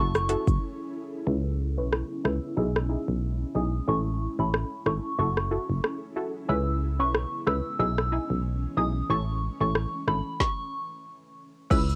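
Heard through a home cassette recording with light reverb, this hypnotic, sultry dancehall cut moves at 92 BPM in C# minor with a swung sixteenth-note feel, cycling through F#m7, C#m7, Emaj7/B and A. Up front, an overdriven, tape-colored electronic drum kit with a deep kick, woody snare, metallic hats, rim click, shaker and crash sits beside a round, digital FM bass. Detuned sawtooth chord stabs with a punchy filter pluck, a soft, pure FM bell melody through chorus and analog delay, and an ethereal, airy pad with tremolo and ensemble chorus fill in behind, with a break at 0.6 seconds, a filter sweep through the main section, and a stop from 10.4 seconds.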